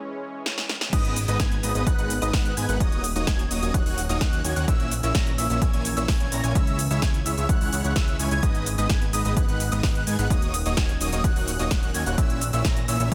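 A lush, detuned unison pad opens this emotional, anthemic festival progressive house piece in G# minor at 128 BPM, sustaining chords in the background while a big-room dance kit plays a short fill with crisp hats and a punchy snare from 0.5 seconds. At 0.9 seconds the drop arrives: an up-front electronic kick joins a fat analog bass under a huge, compressed supersaw riff with tape echo, while a bright, wave-folded unison lead with vibrato spins high arpeggios. The pad, lead, supersaw and bass all pump with sidechain compression over a C#m, G#m, D#m7, A#dim progression, and the dense, heavily limited master carries only light reverb.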